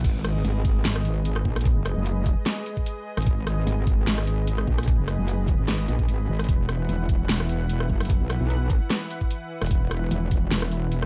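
A saturated, detuned sawtooth wobble bass, a knocking, tape-tinged electronic kick, a dubstep kit with a huge snare, metallic hats, rim clicks and crashes, and a lush, warbling vintage pad with chorus and sidechain pumping all open this heavy, menacing half-time wobble dubstep fragment at 149 BPM in G# minor, joined at 0.4 seconds by an aggressive FM-driven metallic wobble bass as the chords move from G#m to Esus2 at 6.5 seconds within a dark digital ambience.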